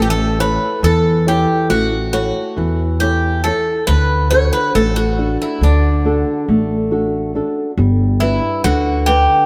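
This Greek folk fragment for bouzouki band moves in a calm, tender 9/8. The bouzouki carries the melody up front with a bright, metallic, picked tone, its double strings and some octave-doubled courses giving the line a ringing shimmer. Beneath it, a flamenco guitar plays thumb-plucked accompaniment with a warm body, and an occasional finger squeak adds an intimate touch. The upright bass sits close in the mix, its woody, growly pizzicato on steel strings grounding the harmony as it moves from A to D at 3.9 seconds and on to G at 7.8 seconds, where a new passage begins. A moderate plate reverb and a slightly distant perspective give the small ensemble a soft, roomy glow.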